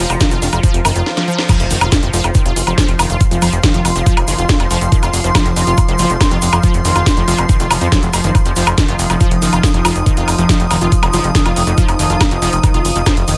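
A straight 4/4 pulse at 140 BPM drives this psychedelic trance excerpt, with a knocking electronic kick placed up front and a techno kit of cracking snare, metallic hats, crash cymbal and woodblock, both re-recorded in a small room, alongside a grainy, bright cabasa in the background. Underneath, a fat analog bass mixing sawtooth and square waves with a fast filter pluck holds the low end between F1 and F2, thick and nasal. A lush, punchy unison pluck riff, detuned with a noise layer and fed through digital delay, moves between Eb3 and F4 and pumps with the sidechain, as does an overtone-sweeping drone of resonant sustained chords carrying chorus and built-in reverb. High above, a cloudy granular pad spans F4 to Eb6, evolving and blurred in the background. After a drum fill from 1.1 to 1.5 seconds, the drop lands at 1.5 seconds with a very quiet electronic impact, and the driving, psychedelic groove carries on through light reverb and digital ambience, with the track built on an F5 chord.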